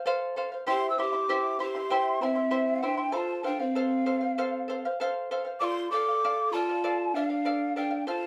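In a straight four-beat pulse, this short, earthy and festive Andean folk passage opens with a bright, shimmering fingerpicked charango on its double strings before, at 0.7 seconds, a breathy large wooden quena with vibrato takes the melody from a distant place while an airy, up-front bamboo pan flute with a crisp chiff adds a hollow second line, all over F, C and D minor chords in a wet studio reverb.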